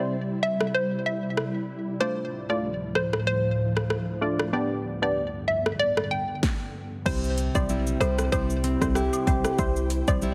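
A hollow, bouncy square-wave pluck carries the melody up front in this sunny, summery dancehall groove, its detuned tone widened by chorus and delay, cut from a longer piece. Crisp digital chord stabs and an ethereal, airy pad with slow attack, ensemble chorus, built-in reverb and sidechain pumping support it over a C, Dm and G progression. A layered electronic deep house kit enters at 0.6 s, with a deep kick, punchy snare and metallic hats, all overdriven, while the 16th notes lean into a light swing. After a brief stop at 6.4 s, the music opens up at 7.1 s: a fingerpicked nylon-string guitar adds full-bodied arpeggios with audible finger squeak, and a clean, boomy 808-style sine bass drops in underneath. From 7.4 s, a vintage, band-limited cabasa and woodblock sit in the background. Near the end, a round, gentle FM lead with vibrato adds a short keys-like second line, and the whole mix carries a heavily compressed radio sound with light reverb.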